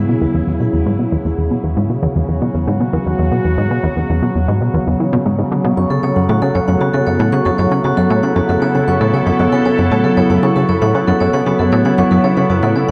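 Mysterious and hypnotic, this sequencer-driven ambient space music opens with a detuned, morphing wavetable pad holding sustained chords under chorus and reverb, while a punchy, wave-folded analog bass riff with a fast filter pluck and delay drives the 4/4 pulse over an E chord. At 5.8 s the harmony shifts to F# minor and a bright, metallic vibraphone enters with delayed arpeggios, its fast motor vibrato ringing through the echo-heavy mix. A long plate reverb wraps the up-front parts in a deep, spacious wash.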